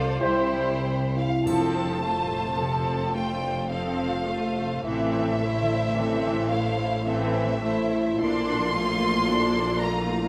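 A wet scoring-stage reverb surrounds this tender romantic orchestral movement in 3/4, cut from a longer piece and unfolding with rubato. Up front, a rich, focused violin section carries the melody over a clear, intense second violin line, lush violas, a ringing fingerpicked harp, a smooth-topped double bass section and a warm, expressive cello section with portamento sitting in the background. A French horn section with light vibrato holds chords while a mellow, punchy, distant trumpet adds stabs from 0.2 to 0.7 seconds, and at 1.5 seconds very quiet, dry timpani struck with hard mallets enter together with a bright triangle.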